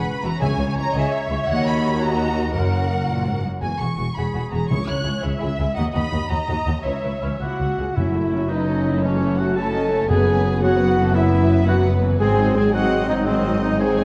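Adventurous and determined, this cinematic excerpt moves in a lilting 6/8, cut from a longer piece. A lush string body carries it from the start: violins sing the expressive melody with soft attack and vibrato over a focused second violin line, while distant violas fill the background and cellos join a close, rich double bass section at 0.2 seconds to anchor the low end. Timpani with medium mallets sound in brief strokes early on and return from 8.0 seconds, sitting behind the strings. At 7.2 seconds a clear, very quiet clarinet and a cor anglais add second lines, and a mellow French horn section brings sustained chords, joined by a tight trombone section at 8.0 seconds as the harmony moves to F# dorian. The whole is bathed in a generous scoring-stage reverb that gives the orchestra a spacious, cinematic sheen.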